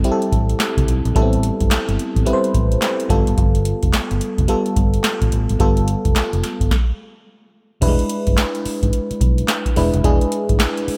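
New jack swing R&B at 108 BPM with a punchy, confident swing, cut from a longer piece, where a booming analog drum machine with a deep kick, crisp snare, handclaps and metallic hats sits up front beside a dark, round, foam-muted fingered electric bass and a glassy, bell-like FM electric piano with chorus, moving from Am7 to G9 before a stop at 6.7 seconds gives way to an E7 section at 7.8 seconds, all in a bright 1980s-style digital production with light reverb.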